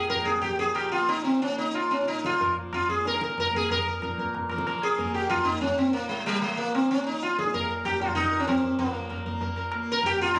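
Captured on a phone in a room with a light, club-like reverb, this short cut from a longer Hindustani classical performance in raga Bhimpalasi on Bb feels meditative and solemn at 187 BPM in 4/4, speeding up throughout. The bright, plectrum-plucked sitar carries the melody up front, its buzzing tone and sympathetic strings giving a round shimmer, while a softly plucked acoustic tanpura sustains a warm drone beneath and a low-tuned tabla enters at 0.1 s with a ringing, compressed and saturated sound. A new section begins at 8.8 s and runs to the close at 10.4 s.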